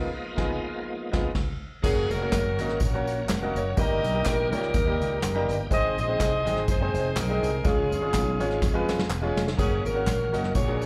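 Uptempo gospel with a soulful, reverent swing, heard as a short cut from a live club set through the venue's PA with light reverb, opening on a band accent and a brief tonewheel organ solo before the bright organ settles into sustained chords in the background with slow rotary speaker, chorus vibrato and key click. A clear baby grand piano with slapback echo and audible action noise accompanies alongside a round, dark fingered electric bass, while a vintage brush drum kit with dark cymbals and a punchy kick enters at 0.4 seconds. At 1.8 seconds a smooth, up-front saxophone section takes the melody with slapback and tape echo, joined by close, dry tambourine and group handclaps, with an organ fill and a later drum fill along the way.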